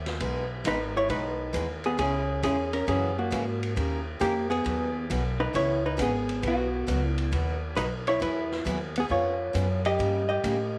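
Western swing country at 135 BPM in E major, this swinging, playful clip is cut from a longer piece and moves on a relaxed triplet lilt. A very quiet pedal steel guitar opens with a brief, clean, fingerpicked slide figure with volume swells that ends by 0.6 s, just before the hollow-body jazz guitar takes the melody at 0.7 s, its clean, compressed tone dark and up front. Beneath it, a woody, thumpy pizzicato upright bass with gut strings anchors the low end, while a bright dreadnought acoustic guitar with fresh strings supplies full-bodied picked accompaniment, finger squeaks audible. A vintage drum kit in a studio room rounds out the groove with a punchy kick, medium-tuned snare, hi-hat and dark ride cymbal, its top end rolled off. The harmony is jazz-tinged, moving from Emaj7 through C#m, F#7 and D#7 to a settled B before turning toward Eadd9 and further seventh chords, all set in a moderate plate reverb.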